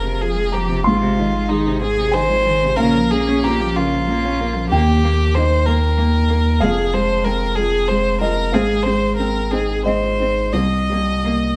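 All four parts begin together at the opening: a felt-muted upright piano, a bowed violin, a bowed cello and a pure sine sub bass, setting a longing, reflective neoclassical mood in F minor. The music moves in 3/4 at 94 BPM with a rubato feel, cut from a longer piece. The single violin carries the melody close and up front, its tone smooth and even with vibrato, while the single cello plays a rich, focused second line with vibrato from the background. The upright piano's soft, mellow accompaniment sounds intimate and boxy, its thin felt and audible action noise adding texture, as the deep, clean sine bass sits dark and sustained beneath. The harmony passes through Fm, Ab, Bbm and Eb, returns to Fm and Ab, and reaches Cm7 at 10.5 seconds. The players sound live together in a wet stone room, and the cello stops at 11.3 seconds, just before the others end at 11.6 seconds.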